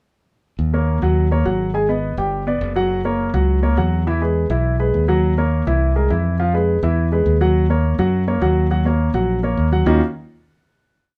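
Sophisticated and sultry, this short Afro-Cuban jazz piece in Eb minor moves at a brisk 207 BPM, with a bright, up-front fingered electric bass playing a tumbao that anticipates the chords and an intimate grand piano, its action noise audible, driving an octave montuno through a chromatic progression from Ebm7 to a closing Ebm9 chord at 9.9 seconds, all set in moderate studio reverb.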